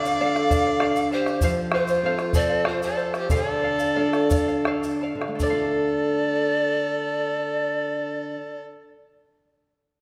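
A breathy, woody pan flute carries the melody in this wistful, earthy Andean folk excerpt, its crisp chiff on each attack and slightly unsteady vibrato giving the line a human, wavering quality. Beneath it, a single close, nasal violin plays a second line with an airy bow and light vibrato, while a classical nylon-string guitar sits up front, fingerpicked with a bright edge. A charango adds shimmering double strings from the background, some doubled at the octave, as the harmony moves from D minor to F and back in a D minor pentatonic setting. The music is in 3/4 with a straight feel, somewhere between 79 and 99 BPM, and it slows from 1.4 to 5.4 seconds. A round bombo from a small room and a grainy, distant tube shaker mark the pulse until both fall away at 5.8 seconds, leaving the flute, violin and strings. The dark production is bathed in a soaking scoring-stage reverb that lends the whole ensemble a spacious, lingering tail.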